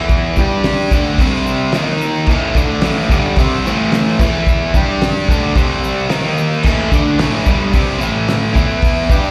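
Garage rock with a menacing, raw edge, moving at 110 BPM in A minor, this short cut from a longer piece sets a biting, double-tracked overdriven guitar riff up front, its slapback echo ringing over power chords that cycle through G5, D5, C5 and D#5 before landing on Am and E5. Beneath it, a cloth-damped, thuddy acoustic kit of fat snare, tight kick, hi-hat and dark crash cymbals plays throughout, while a grainy egg shaker sits close and very quiet in the mix. The whole performance is heard live through the venue's PA, with a moderate club reverb lending a recital-hall bloom.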